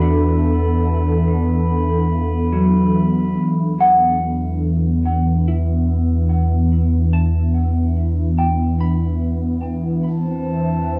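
In a straight, unhurried 4/4, this melancholic, reflective ambient fragment from a longer piece rests on a smooth, detuned sawtooth pad with chorus holding sustained chords up front, while a deep, round sine sub bass sits beneath it. A dark, clean, fingered electric guitar spins arpeggios through phaser, tape echo and plate reverb. A faint, glassy, ethereal glass harmonica shimmers until 3.4 s and returns at 10.0 s as the chords move from Bm7/E to E7(no3) and settle on Cadd9/E, all within the intimate, slightly damp room sound of a home cassette recording.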